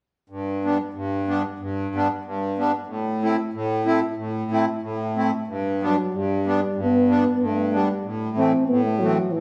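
Jolly and festive, this excerpt of alpine folk in G major moves at 93 BPM in a straight 2/4, with a reedy, warm, up-front accordion with slow beating carrying the accompaniment from 0.3 seconds, before a dark euphonium with a smooth top enters at 5.8 seconds to play the melody in a classical solo style, the two heard as a band playing live together in one room bathed in wet, large studio reverb.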